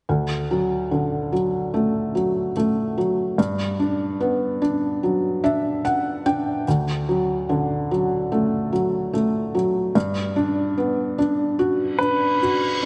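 Hopeful and emotional, this slow pop excerpt at 73 BPM in D major sets a soft, mellow felt-muted upright piano, intimate and up front with audible action noise and short sustain, over gently alternating D and Gmaj7 chords in a lush hall reverb, adding a felt piano fill at 5.0 seconds before an electronic reverse cymbal rises at 11.9 seconds just as a clear, long-sustaining baby grand piano enters on the melody at 12.0 seconds.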